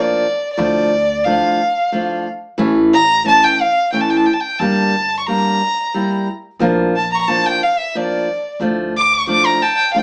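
A bowed violin and a fingerpicked flamenco guitar open together at 0.0 s in this festive, soulful klezmer piece, moving at 90 BPM in a straight 3/4. The violin carries the melody up front and close, a single player with a smooth, even tone and light vibrato, singing between D5 and D6. Beside it, the acoustic guitar plays accompaniment with warm, fresh-string clarity and flamenco colour, also placed up front. An upright bass joins at 0.6 s and drops out at 9.4 s, its woody, dark pizzicato sitting in the background. The harmony moves through Bb, Dm, A, Gm and back to Bb and Dm. The band sounds as if playing live in one room, with a wet studio reverb and a small-speaker character, in a short cut from a longer piece.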